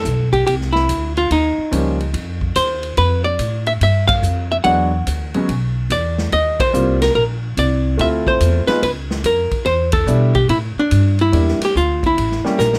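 A dark, clean archtop guitar carries the melody from the start over woody pizzicato upright bass and a natural big-room drum kit with boomy kick, ride and hi-hat, swinging at 144 BPM in a sophisticated small-group bop feel. An intimate grand piano with audible action noise adds a brief touch at 1.7 seconds and then comps from 4.6 seconds through rich extended harmony such as Cmaj9, Eb9 and Em7b5, resolving toward A7b9. The band hits accents along the way, and a drum fill closes this snippet of a longer piece, all set in light reverb.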